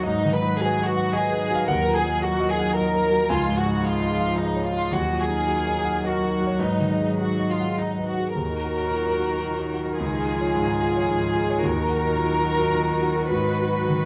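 A light reverb gives this short, intimate passage of neoclassical piano and strings a soft halo, with a polished grand piano placed up front beside a muted chamber violin section. The mood is melancholic and fragile, moving at 110 BPM in 3/4 with a rubato feel over a gently circling progression of G#m7, D#m and C#add9. The violins carry the melody con sordino, their veiled, dark tone shaped by vibrato and soft attacks, while the piano supplies clear accompaniment with long sustain and audible action noise. Beneath them, a single muted cello plays a second line with portamento, and a hollow, flute-like pad holds airy sustained chords touched with chorus. At 8.3 seconds a single muted viola joins in the background with light vibrato, adding a quiet inner voice until the passage breaks off at 14.1 seconds.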